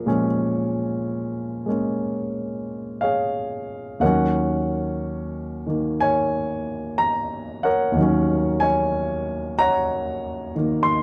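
A warm grand piano opens this brief solo jazz fragment, sounding intimate and up front from the first moment. The pace is slow, around 61 BPM in 4/4, with a swung eighth-note feel that stretches freely in rubato, giving a cool, unhurried mood. The harmony rests on Bbm7 before shifting to Ebm7 at 4.0 seconds, while the playing spans from Eb2 up to C6. Close, detailed miking captures a natural tone along with audible action noise from the instrument. A moderate studio reverb adds a touch of space around the piano before the passage ends at 11.0 seconds, cut from a longer piece.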